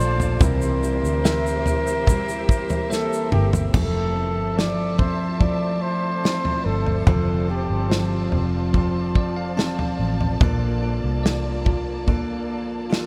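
Emotional and heartfelt, this 72 BPM pop ballad excerpt in F major unfolds in a dreamy, reverb-soaked mix as a mellow, distant flugelhorn carries the melody until 10.0 s over bell-like tine electric piano, lush bowed strings with vibrato, a full-bodied picked steel-string acoustic guitar playing arpeggios in the background, a round, foam-muted electric bass, a grainy tube shaker that stops at 3.7 s, and a punchy, up-front country drum kit that enters at 0.2 s and plays a fill as the harmony moves from C7 to Fmaj7.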